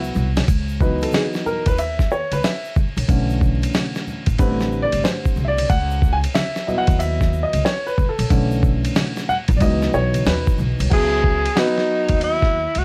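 Vinyl crackle and a modest small-room reverb frame this nocturnal, smoky jazz-hop excerpt at 92 BPM with a swung sixteenth-note feel, moving through C#m11, Bm11 and Am7. A dark, intimate upright piano with audible action noise takes a solo from 0.5 to 10.9 seconds, over a woody pizzicato upright bass and a gritty, compressed sampler-style drum kit with a thumpy kick and tape-warm tone, while bright, saturated egg shaker and congas sit in the background. A breathy tenor saxophone, vintage and full of vibrato and scooped subtone notes, returns at 10.9 seconds to carry the melody.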